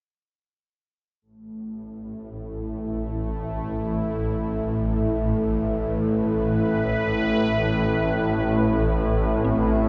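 This ominous, unsettling dark ambient drone, cut from a longer piece, opens at 1.2 s with a sweeping, resonant pad holding an Asus2 chord up front, its detuned sawtooth-and-triangle tone bright, ring-modulated and chorused. At 2.1 s a swarming, warbling drone of unison sine voices settles in the low register with its own built-in reverb, all at a slow 59 BPM in 4/4, tuned to A4 = 438 Hz and bathed in a huge ambient reverb with a rolled-off top. Near the close, at 9.4 s, an eerie, inharmonic FM bell plays mellow arpeggios on C4 in the background, joined moments later by a very quiet metallic drone.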